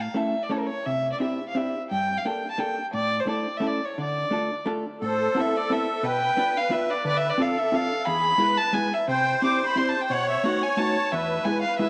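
Nostalgic and whirling, this musette waltz fragment carries a dark, nasal, gut-string violin melody over a clean, picked hollow-body electric jazz guitar accompaniment, joined at 5.0 s by a shimmering, close-miked musette accordion playing a dry second line, within a wet plate reverb.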